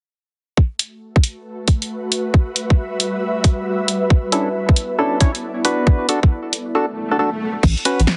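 Heavily compressed and radio-like with light digital ambience, this soulful, bouncy cut from a longer two-step UK garage piece sets a tight, layered electronic kick and a punchy, tape-tinged analog drum machine of snare, hi-hat and crash under an ethereal, airy pad that pumps to the sidechain through ensemble chorus and reverb; hollow, percussive organ stabs with 12-bit sampler grit, chorus and delay arrive at 4.3 seconds, a brief electronic swell sounds at 6.9 seconds, and a deep, saturated sine sub bass lands at 7.6 seconds.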